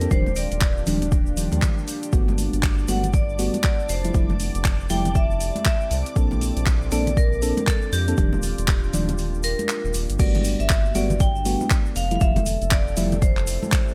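Warm and sunny, this deep house passage, cut from a longer piece, moves with a swung 4/4 groove and a dry, close sound. An overdriven electronic kick sits up front, joined by a layered deep house kit of crash, handclaps and hi-hat with its own overdrive, while congas and a grainy, bright egg shaker fill in the background. A round analog bass holds the low end, and a mellow FM electric piano plays soft, decaying stabs colored by chorus, tape echo, a low-pass filter and sidechain pumping. Above them, a vibraphone struck with hard mallets carries the metallic, ringing melody through a digital delay. Behind everything, a deep, moody ambient pad sustains warbling, detuned chords with chorus and its own reverb, and a silky analog string pad adds phaser shimmer until it drops out at 10.2 seconds. A short break from 9.2 seconds gives way to the drop at 10.2 seconds, as the chords cycle through rich major-ninth harmonies.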